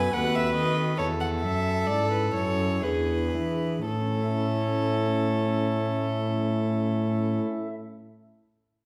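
Set in a reverberant recital hall, this short cut from a longer baroque-style sonata movement in A major moves at a serene, dance-like 3/4 lilt of 56-74 BPM, easing into a slowdown over the first 3.8 seconds as the harmony passes from a D#dim7 through A/E and E7 to A. A close, rich gut-string violin carries the melody above a second violin with light vibrato, while a reedy period-style cello holds the bass. A soft, hollow stopped-flute pipe organ with tremulant and romantic voicing fills in the continuo and sustains alone until 7.7 seconds after the strings stop at 7.4.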